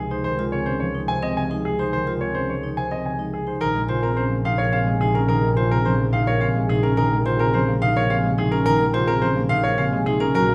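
The clear concert grand piano carries the melody up front between Ab4 and Ab5 with a polished, present tone and a deep bass weight. This brief, bright and hypnotic slice of minimalist pattern music is cut from a longer classical piece, moving at 107 BPM in a straight 3/4 and shifting from Db major to Bb minor at 3.6 s, where the harmony turns from Dbmaj7 to Bbm9. Beneath the piano, a thumb-plucked concert harp supplies ringing, acoustic accompaniment, while a single bowed double bass sits distant in the low register, rich, smooth and even, with vibrato. A vibraphone struck with medium hard mallets, its motor off, enters at 0.1 s with metallic arpeggios, close-miked, dry and full in its sound. A wet recital hall reverb with a 1.4-second decay surrounds the ensemble.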